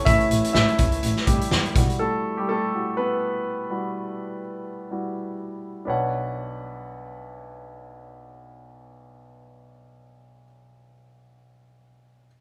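Recorded as a band playing live in one room with moderate studio reverb, this earnest, dramatic piano-driven pop excerpt in B minor at 124 BPM, with a light sixteenth-note swing, opens with a clear, polished baby grand piano up front, briefly joined by a warm bowed double bass with vibrato and portamento and a loose acoustic indie drum kit with a punchy kick and rolled-off top; both stop by 2.0 s, leaving the piano alone as the harmony moves from A to Emadd9 and then to Bmadd9 at 5.9 s.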